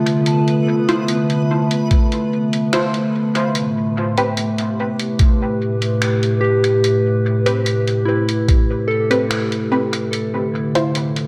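Ambient dub in A minor at a slow 73 BPM, this meditative, hazy excerpt rests on a warbling, nostalgic tape-like pad holding dark, detuned chords through Dm7, Am9 and back to Dm7, while a soft, pure FM synth bell spins chorused arpeggios through tape echo. A reversed, granular swelling texture glows brightly in the background until 3.6 seconds, and a muted, deep filtered chord stab with phaser and dub echo enters at 0.9 seconds. A muffled, pitched-down lo-fi kit of finger snaps and hi-hat carries dub echo, and an overdriven, thumpy electronic kick sits up front from 1.9 to 8.7 seconds, all bathed in a moderate plate reverb within an echo-heavy mix.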